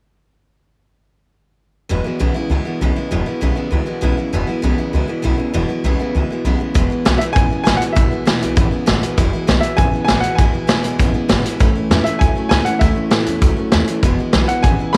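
A straight 4/4 pulse at 198 BPM drives this upbeat, retro rockabilly piece in E major, cut from a longer recording. From 1.9 seconds, a full-bodied, dreadnought-style steel-string acoustic guitar picks out the accompaniment with audible finger squeak, while a slightly broken-up, twangy electric guitar plays a low riff through a small old amp, sitting in the background. Underneath, a pizzicato upright bass with gut strings gives a dark, thumpy foundation. At 6.8 seconds a vintage drum kit enters up front, with a punchy kick, a medium-tuned snare and hi-hat, and a rolled-off top end. At 7.2 seconds a brilliant upright piano takes the high melody with audible action noise, short sustain and tape echo. The harmony sits on E, moves to A and returns to E, all within light reverb and a small-room ambience.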